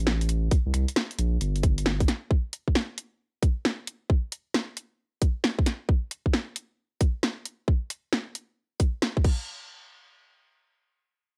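Soulful and bouncy, this two-step UK garage cut moves at 134 BPM in A minor with a 65% swing on the sixteenths, tuned to A4 = 444 Hz. A deep, thick, saturated sine sub bass with sidechain pumping opens the track and stops at 2.1 seconds, while an up-front analog drum machine with a tape-warm, punchy snare lays down crash cymbal, finger snaps and hi-hat, joined at 0.5 seconds by a tight, layered electronic kick. The dry mix carries the character of a home cassette recording, and a new section arrives at 9.5 seconds.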